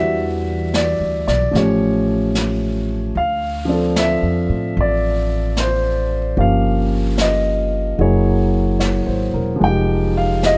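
A jazz ballad excerpt with an intimate, romantic mood, swung gently in four and built on lush extended chords that drift from Em9 toward Fm9. A dark, mellow baby grand piano sits up front with smooth, long-sustaining voicings, beside a woody pizzicato upright bass with steel strings. A distant, roomy brush kit enters at 0.7 seconds, adding brushed snare and hi-hat under light reverb.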